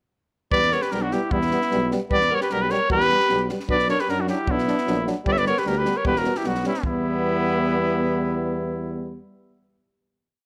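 A brisk 2/4 pulse at 152 BPM drives this short, complete Balkan brass band piece in E dorian sharp4, its mood both bittersweet and fiery. A compact cocktail drum kit, dry and acoustic with a punchy kick and a high-tuned snare, plays a two-stick pattern from 0.5 to 7.0 seconds, while the distant, roomy tuba holds down root-and-fifth bass on the main beats with a light vibrato. Up front, a clear trumpet with a smooth top carries a hook-based melody built from short motifs. The alto saxophone, warm and close-miked with vibrato, shadows the trumpet in a harmony line mostly in thirds. Behind them, a lightly vibrating trombone sits in the background and a vintage-toned euphonium adds warmth, each playing one line of the chords as a steady pulse through the Em, Bm and G changes. The band then holds a final E minor chord from 6.8 to 8.4 seconds, wrapped in light reverb, with the drums dropping out at 7.0 seconds.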